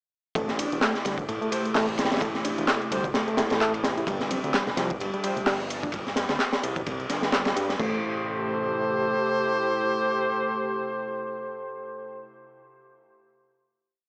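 Breakbeat piece at 129 BPM in A minor, funky and energetic with a swung 16th feel. A gritty, saturated looped break with edits sits up front, layered with a dry analog drum machine's clap, closed hat and ride. Under it, a fat, detuned sawtooth bass plays a dub-style line and a reedy electric piano repeats a 16-step riff through fast tremolo and dub echo. Bright brass stabs with light vibrato enter at 1.5 s and echo sparsely over a lo-fi, warbling tape pad that pumps under sidechain, and soft-handed congas surface briefly in the background at 4.3 s. From 7.8 s the pad and brass hold a final Am7 chord, all heard through a small-speaker sound in a light, small room.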